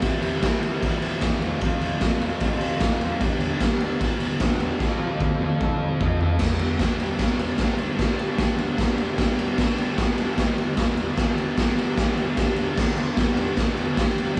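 A raw live-room sound with light reverb and a dulled top end frames this rowdy, swaggering garage rock cut at 151 BPM in G mixolydian, moving through C, F and G. Up front, a crunchy, double-tracked overdriven electric guitar picks out a riff while a gritty, saturated, lo-fi acoustic kit with a punchy kick and medium-tuned snare pounds away in a bright stone room. A drum fill from 4.8 to 6.4 seconds kicks the band into its second section, and both parts carry on to the end of the excerpt.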